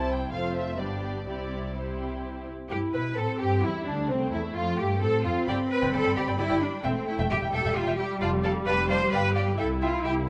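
Lively and cheerful, this short excerpt from a quick classical-period movement for string orchestra moves in 3/4 at 130 BPM with a rubato feel, set in C major. A muted violin section carries the melody from C4 to B5, veiled and soft in attack with a smooth top, sitting in the background. A second muted violin section plays a distant second line beneath it, while a dark, con sordino viola section supplies the accompaniment. The cello section, lush and symphonic with vibrato, shares the bass role with an up-front double bass section reaching down to E1. All five sections play from the opening, and after a brief opening phrase a new section begins at 2.7 seconds, moving through chords such as Fmaj7/C and Dm7/F before settling on C at 9.6 seconds. A moderate scoring-stage reverb with a 1.6-second decay surrounds the muted strings in an enveloping space.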